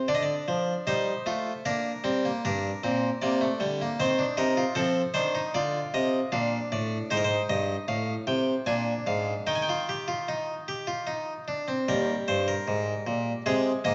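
Joyful and stately, this excerpt from a baroque-style three-part fugue in triple metre is played by a solo French-style harpsichord whose plucked, bright single set of strings sits up front across a span from low bass to high treble. The harmony moves steadily through minor and major chords, arriving on E-flat at 9.5 seconds before a new section begins at 11.9 seconds. A wet recital hall reverb surrounds the instrument, and the top end stops at 7.8 kHz.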